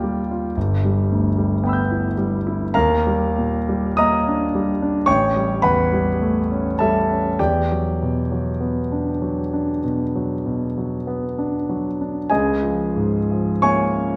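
A wet recital-hall reverb surrounds a clear, intimate grand piano that sits up front, its natural tone carrying audible action noise. This serene, hazy passage of impressionist solo piano is cut from a longer piece and moves in a rubato 4/4, spanning G1 to G6. Its colourful harmony drifts from Ebadd9 through Ebmaj7, A9 and Em9 before settling on C#69 at 12.3 seconds.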